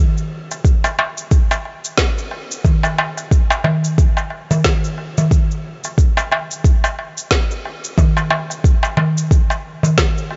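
A woody electronic snare and shaker open this hypnotic, warm downtempo excerpt at 0.2 s, moving at 90 BPM in 4/4 with a light swing on the sixteenths, before a crisp, saturated metal-shell darbuka, played with hard hands and sitting up front, joins at 0.5 s and a deep, produced electronic kick anchors the groove from 0.6 s, the kick, snare and shaker carrying a small-room ambience while a digital ambience caps the top end at 7.8 kHz.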